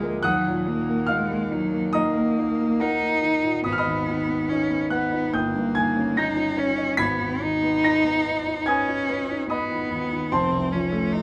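A rich, bowed cello sings a solemn, melancholic melody with focused vibrato and a smooth top over a concert grand piano's open accompaniment and deep bass, both up front from the start in this romantic classical duo in Eb minor, moving at a rubato 71 BPM through Ebm, Abm and Eb7/G before arriving on F at 10.3 seconds, all set in a moderate, large studio reverb.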